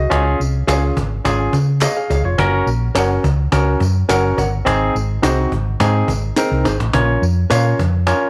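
Uptempo 1960s-style soul at 105 BPM in Db major, joyful and uplifting, with a barky, up-front tine electric piano through a combo amp and a round, dark hollow-body short-scale bass over a snappy cajon with snares, while tambourine, tube shaker and group handclaps sit in a small room, a compressed, mellow electric guitar adds clean stabs from 0.7 s, and a drum fill at 6.4 s leads into a move to Bb minor at 6.9 s, all under light studio reverb.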